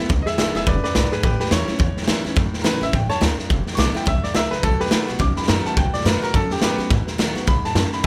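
Rockabilly at a brisk 212 BPM with a swung 4/4 feel, this rollicking, upbeat clip features a bright, brilliant upright piano soloing high over a dry mix, backed by a woody plucked upright bass, a full-bodied picked acoustic guitar in the background and a gritty, saturated garage drum kit with a boomy kick and pumping small-room sound, up front, as the chords move from E7 to A7, back to E7 at 3.5 seconds and on to B7.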